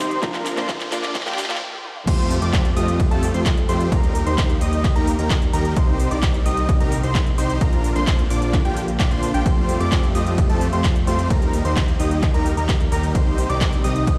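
A straight 4/4 pulse at 130 BPM drives this triumphant, euphoric festival progressive house clip in Bb major, opening with a build-up where a background riser, drum fills, filter sweeps and a clean, direct-recorded electric guitar lead into a brief stop at 1.6 seconds. A crisp-hatted big-room kit of claps, toms, ride and crash, a fat analog bass, and huge detuned supersaw chords play from the very start, joined at 0.2 seconds by a punchy, overdriven electronic kick up front, before the drop lands at 2.1 seconds. Above them, a catchy, plucky unison lead plays delayed arpeggios, and a nasal, chorused pad sustains chords in the background, all pumping against the kick in a stone-walled room sound.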